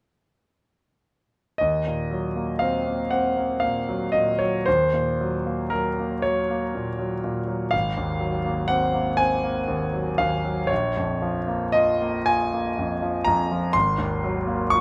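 Lightly reverberant and intimate, this wistful, nocturnal passage of impressionist classical solo piano, cut from a longer piece, features a brilliant, up-front concert grand with deep bass and audible action noise that plays alone from 1.6 to 14.8 seconds in a loose 6/8 with uneven, rubato beats, while the harmony drifts from Ebm6 through Gb/Eb, Ab13 and Bbm7 to Ab9.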